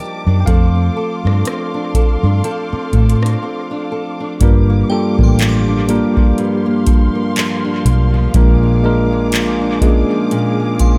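Contemporary R&B at a slow 61 BPM in G minor with a swung sixteenth feel, this sensual, longing excerpt from a longer piece opens with a bell-like tine electric piano taking the lead over veiled, con sordino strings and a small fingerpicked nylon-string guitar with tape echo, as a round, foam-muted bass and a booming analog drum machine with deep kick, metallic hats, handclaps and rim click sit up front in an echo-heavy digital ambience, a break arriving at 3.4 seconds before a crystalline FM synth bell with chorus and phaser joins in the background at 4.9 seconds, and the electric piano closing on a fill at 10.3 seconds.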